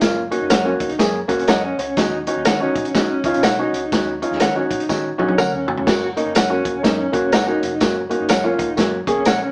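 The sound is that of a band playing live together in one room, heard through a small speaker with a moderate studio reverb, which gives this short cut from a longer piece a vintage, lo-fi character. It is an uptempo, joyful 1960s-style soul groove in F# major at 123 BPM in 4/4, with a lightly swung eighth-note feel that invites dancing. An upright piano sits up front with a woody, intimate tone and audible action noise. A vintage drum kit with a punchy kick, medium-tuned snare and muffled, rolled-off top drives the groove alongside a jingly tambourine tucked in the background. Beneath them, a dark, round, foam-muted picked electric bass with tube saturation stays in the background, and from 0.3 s an electric guitar through a small old amp plays a slightly broken-up riff with tremolo. A clean, compressed guitar recorded direct adds stabs bathed in spring reverb, and the harmony moves from F# to D#m7 and back to F#, with a drum fill from 4.9 to 5.9 s leading the return.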